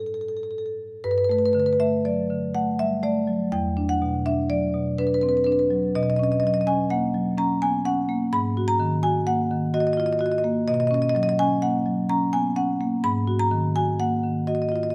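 Close, detailed microphones catch every stroke of a warm, up-front marimba played with medium mallets, set in a moderate recital hall reverb that lingers for about 1.7 seconds. This contemporary classical piece for solo marimba is cut from a longer work and feels flowing and playful, moving at 126 BPM in a rubato 5/4 across a range from E2 to B5. After a brief opening on A7sus4, the harmony drifts through colourful chords such as Gmaj9, Esus2 and Bmaj9, settling on G#sus2 at 13.0 seconds.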